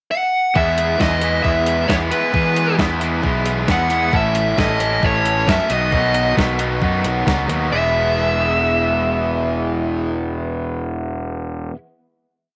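Light reverb wraps this short indie rock piece in a digital ambience, and its mood is jangly and upbeat. A dark, smooth lead guitar with overdrive and slapback echo sits up front from 0.1 seconds, playing a motif-based melody built from song-like phrases. Two more overdriven guitars drive eighth-note chords beneath it: a biting one on the upper strings, touched with subtle chorus and slapback echo, and a crunchy, bright one pushing barre chords. A growly fuzz bass, fingered and up front, is locked to the kick of a crisp 8-bit drum machine whose thumpy kick, medium-tuned snare and hi-hat play a tape-warm indie four groove. The drums stop at 7.6 seconds, and the guitars and bass carry on into a final chord from 7.7 seconds.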